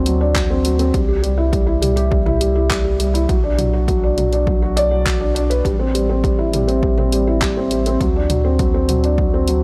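Intimate and melancholic, this short piano and strings electronica excerpt moves at 102 BPM in a straight 4/4, set in A dorian and cycling through D7, C, Bm and Am7. A felt-muted upright piano carries the riff up front, its dark, thick-felt tone bathed in tape echo with audible action noise, while a round sine sub bass sits beneath with sidechain pumping. A deep house kit of handclaps, hi-hat and toms enters at 0.1 seconds, joined by a punchy, layered electronic kick from 0.4 seconds, all set in a digital ambience.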